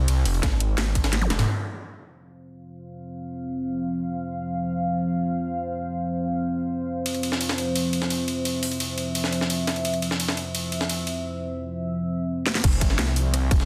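This dark, technical drum and bass piece, cut from a longer track, opens with a thick, detuned sawtooth bass in the low register, pumping against the beat with chorus and overdrive. Two layered kits and an overdriven electronic kick join it in a brief, aggressive burst of cracking snare, bright hats, rim clicks, toms and crash, with a gritty, high-tuned breakbeat snare up front and a short electronic zap during a fill. A heavy, pulsing pluck wobble bass flickers in on a saturated low F. From 2.7 seconds a deep, moody pad takes over with sustained chords, sliding in slowly and warbling with a vintage, sub-octave character. The compressed breakbeat kit returns at 7.1 seconds to drive the futuristic mood at 172 BPM in a straight 4/4. At 12.6 seconds the drop brings the full drum layers, the tight kick and the saw bass back together in a dense, heavily limited mix with a moderate room reverb.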